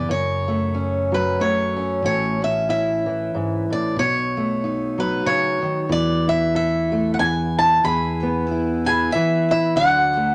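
A bright, boxy picked swing-style acoustic guitar carries the melody up front in this gentle, nostalgic acoustic folk piece in 3/4 with a lilting swing feel, supported by a fingerpicked steel-string guitar with fresh strings and audible finger squeak, a dark, round fingered electric bass, and a shimmering, octave-doubled twelve-string guitar that enters in the background at 7.8 seconds with arpeggios, all set in a moderate studio reverb as chords move from F#m through A, B7 and Esus4 to E and D.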